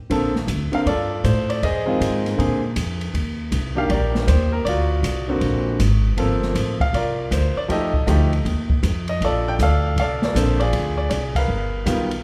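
A swung 4/4 at 158 BPM drives this short cut from a longer jazz piano trio piece in Bb major, sophisticated yet relaxed, with all three parts playing from 0.1 s to about 12 s. A clear, intimate baby grand carries the melody up front with long sustain and audible action noise, over a woody, thumpy pizzicato upright bass and a dark, smooth drum kit of hi-hat, boomy kick, medium-tuned snare and dark ride cymbal. The harmony moves through rich colors such as Bbmaj9, D7alt and Gm11, and the trio sits in the moderate reverb of a church or concert hall.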